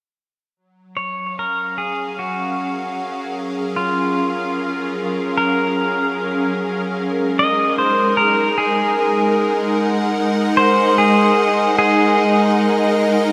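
Ambient music in Gb major at 75 BPM, cut from a longer work and carrying a weightless, warm mood: a morphing, sine-toned wavetable pad with ensemble chorus and its own reverb holds sustained chords moving from Gbmaj7 to Ab5 at 7.0 seconds, while a clean, twangy electric pedal steel guitar, played with fingerpicks and slide, carries the melody through volume swells and tape echo, both parts fading in from 0.6 seconds and sitting up front inside a huge, wet ambient reverb.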